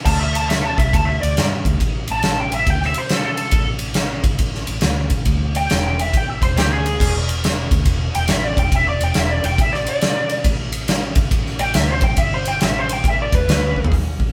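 A live-in-one-room sound with moderate studio reverb frames this gritty, swaggering cut from a longer blues rock and southern rock power-trio piece, moving at 139 BPM in 4/4 with a swung eighth-note feel. A lead guitar through a small cranked amp takes an overdriven, lo-fi solo with wah, while a dark, round, foam-muted fingered electric bass holds the low end. A big, airy rock kit sits up front with a fat snare and punchy kick, and a drum fill arrives at 13.7 seconds as the chords move from C69 through Gsus2 and E7 to close on E5.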